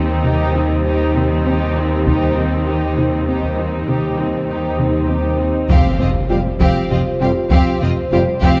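A cinematic, hybrid orchestral and electronic film score moves at 66 BPM in a straight 6/8, brooding and relentless in mood over a Cm/Eb chord that shifts to Fsus2 at 5.7 seconds. From the opening, a moody analog pad with chorus and phaser holds sustained chords beneath a smooth viola section, while a rich, up-front cello section carries the low line and a soft, round pluck with chorus and tape echo traces arpeggios in the background. Taiko drums struck with hard sticks enter at 2.1 seconds, driving a build-up that lands on an electronic impact at 5.7 seconds. At that moment violins arrive with an expressive, vibrato-laden melody and a lush second line, and a woody double bass section settles in the background. Very quiet French horns and trombones add sustained chords from 6.3 seconds, all set in a moderate scoring-stage reverb with a dark, warm production, and the passage is cut from a longer piece.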